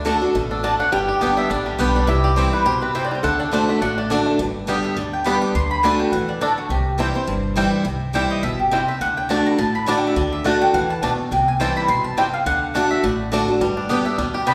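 Set in a wet recital hall with a 1.5-second reverb tail, this lively, virtuosic bluegrass excerpt sounds as if captured in a church or concert hall. It runs at a swung 208 BPM in 4/4 in D mixolydian, moving through D, G and C chords. A mellow, woody mandolin carries the melody from 0.5 seconds, its picked double strings climbing as high as D6. Up front, a bright, boxy parlour steel-string guitar drives the accompaniment, with audible finger squeak. Further back, a twangy, percussive banjo plays arpeggios and a second, bright mandolin adds stabs. Underneath, an upright bass with gut strings gives a dark, thumpy pulse, while a metallic, nasal lap resonator guitar with slide plays a second line in the background only until 4.2 seconds.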